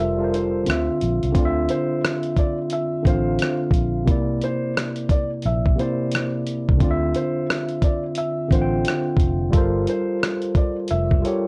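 Reflective and nostalgic, this lo-fi hip hop excerpt at 88 BPM in D minor, swung at 63% on the 16ths, sets a soft, felt-muted upright piano melody, with audible action noise through a low-pass filter and analog delay, beside a worn, slightly out-of-tune tine electric piano up front on cassette tape, a dark, round, foam-muted electric bass with tube saturation, and a gritty, compressed sampler-style drum kit of thumpy kick, hi-hat and rim click entering at 0.3 s, the mix steeped in moderate reverb and warbling old tape with pitch drift over chords moving through Gm11, Dm9 and C9.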